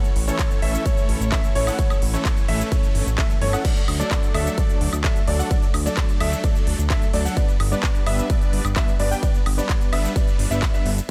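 A straight pulse from a punchy, up-front electronic kick and a crisp, tape-warm big-room kit of hi-hats, handclaps, cabasa, woodblock, ride and crash drives this anthemic, triumphant progressive house drop, where huge detuned supersaw chords ride a riff over a fat, saturated analog bass with a filter sweep, both pumping to the sidechain, while a dark, worn grand piano arpeggiates with tape echo in the background and veiled, muted strings hold sustained chords until 3.6 seconds as the harmony moves from A to D to G.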